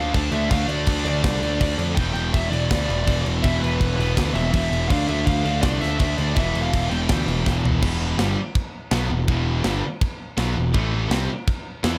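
A tight, up-front metal drum kit of china and crash cymbals, kick, snare and toms and a growly, fuzz-driven picked bass sit forward in a small room, while three high-gain and overdriven rhythm guitars (one scooped, one bright and distorted, one a very quiet, double-tracked semi-hollow) churn out riffs behind them in this dark, heavy metal cut from a longer piece in E minor at 164 BPM. A bright, distorted lead guitar carries the melody from the start until 7.4 seconds over a half-time feel. A drum fill at 7.5 seconds pushes into a new section at 7.8 seconds where the riffing pushes on over the power-chord changes.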